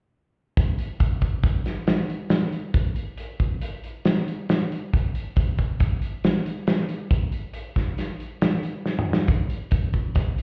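A loose indie rock drum kit, acoustic and mid-forward with a punchy kick, medium-tuned snare, hi-hat and toms, plays up front in a small room at 138 BPM in a straight 5/4, its bright yet wistful pulse heard muffled as if through a wall with stone-room reverb and moderate studio ambience, and a drum fill arriving at 8.9 seconds in this short cut from a longer piece.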